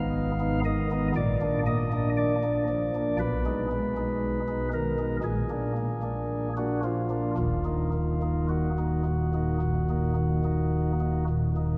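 Dark and solemn, this classical chorale-style passage in Eb minor moves slowly at around 54-59 BPM in 4/4, with a rubato feel. A solo chamber organ on soft flute stops, with a chiff, carries the whole 11.8 seconds from a deep Eb1 up to F5. It moves through Fm7b5/Ab, Bb, Abm/Cb and Bb7 before settling on Ebm at 7.4 s, all bathed in a long cathedral reverb and heard from further back in the room, cut from a longer piece.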